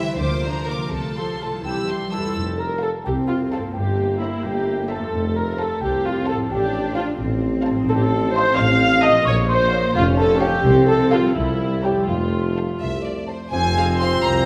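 A playful, whimsical cinematic film cue in F major, moving in a lilting 6/8 at 86 BPM with a mischievous, magical mood, where a dark, sul tasto violin section carries the melody over a softer rich second violin line, up-front floating violas, intimate cellos and pure double basses, all bowed gently alongside a ringing, bright harp's arpeggios in the background, until a sweet, bell-like celesta joins the melody at 1.7 s and a roomy tuba anchors the bass from 2.4 s, before a brief final chord at 13.5 s shifts to F minor and brings in an airy silver flute, clear clarinet, distant oboe, bassoon and a background French horn section, all bathed in a lush scoring-stage reverb in this fragment of a longer piece.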